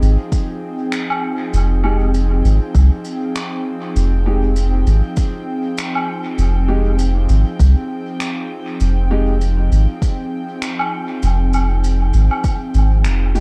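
A swung 4/4 groove at 99 BPM sets an ambient dub cut in F minor resting on a single Fm9 chord, spacious and hazy in mood, with a deep, overdriven electronic kick sitting up front beside a round, soft sub bass. A shaker, finger snaps and woodblock carry a dub echo with a warm, rolled-off top, while an airy, breathy pad holds mellow, detuned chords under a chorus shimmer. A clear, woody upright piano drops gritty, echoing stabs from 1.8 to 9.3 seconds and briefly returns at 13.3 seconds in this dry, echo-heavy mix taken from a longer piece.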